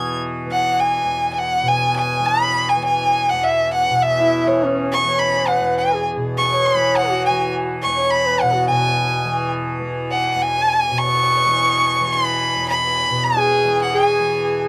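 Radiant and meditative, this Indian classical excerpt in raga bhupali on E moves at 104 BPM and gradually speeds up, with a biting, airy-bowed violin singing the melody up front with intense vibrato over a shimmering, buzzing tanpura drone, while a sarangi with soft attack and gliding portamento adds an expressive second line from 4.2 to 8.8 seconds and again from 13.4 seconds, all captured in a dry, close 1970s-style studio sound.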